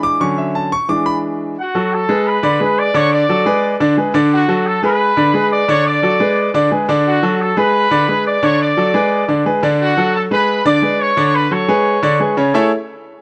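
Festive and danceable, this latin cut moves at a brisk 175 BPM in a straight 4/4, taken from a longer piece. A bright grand piano opens alone for the first 1.6 seconds, brilliant and intimate with audible action noise, and carries the accompaniment through the whole passage over chords such as Dmaj7, G#dim/D and Bm7. At 1.6 seconds a trumpet section takes the melody, punchy and tight with a light vibrato and a vintage pop-band character. Both parts sit up front, the polished piano slightly louder than the horns. The sound is a dry, close 1970s-style studio recording with just a touch of reverb, and the passage comes to rest on an Amaj7 at 12.5 seconds.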